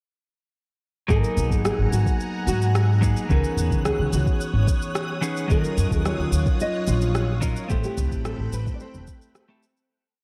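A dark, warm digital ambience frames this short, relaxed and smooth sunset chillout piece, a complete groove that runs from 1.1 seconds and fades out between 7.0 and 9.9 seconds. Up front, a woody, thumpy upright bass plays a syncopated pizzicato riff over a soft electronic kick and a light lounge beat of shaker and rim click, both re-recorded in a large room. A thumb-plucked nylon-string guitar, deep and classical in tone, carries a motif-based melody of song-like phrases through a tape echo, while a clean, compressed electric guitar picks held drop2 chords with syncopated pushes. A silky vintage string machine enters at 1.5 seconds with slow-attack sustained chords softened by ensemble chorus. In the background, a twinkling granular texture with an octave-up shimmer and its own reverb holds a single high note over the gently shifting minor ninth chords.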